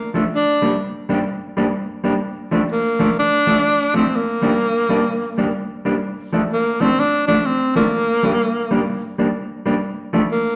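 Ska at 126 BPM in 4/4 with a swung eighth-note feel, this upbeat, cheerful fragment of a longer piece pairs a breathy, whispered tenor saxophone carrying the melody with a mellow, dark electric guitar accompanying it, the guitar fingered, clean and colored by tape echo. The saxophone sits close and intimate with soft attacks and vibrato, while the band plays live together in a large studio bathed in lush reverb. The harmony moves through Gm, Bbmaj7 and F6 across two repeated passages, the second beginning at 6.0 seconds.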